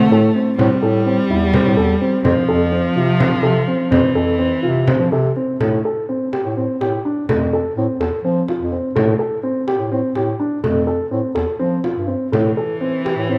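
A dark, lightly reverberant production frames this restless, playful excerpt of contemporary chamber music in 7/8 at 251 BPM in F major, where a boxy, short-sustained baby grand piano spins arpeggios up front over a mellow, classical-style bass clarinet bass line, a close, bowed cello sings an expressive second line with vibrato and portamento until 5.4 seconds and returns at 12.3 seconds, and a small, bright frame drum sounds distant in a large room from 0.6 seconds.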